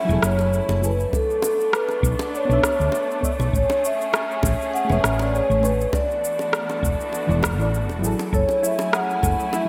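Bright 1980s-style digital production, bathed in a lush hall reverb, frames this relaxed sunset chillout excerpt in F# minor at 100 BPM with a light sixteenth-note swing. A soft-mallet vibraphone carries the metallic, ringing melody with delay over a warbling FM electric piano with chorus, veiled con sordino strings holding sustained chords, and a growly, up-front fretless bass, while an electronic shaker and rim click with gated reverb, high-tuned bongos in the background and a deep analog kick entering at 1.1 s fill out the rhythm section. The chords move from F#m9 through Bm11, Amaj9 and E7sus4, and after a short break at 7.7 s a gentle, detuned pluck adds chorused arpeggios from 8.3 s as the harmony returns to F#m9.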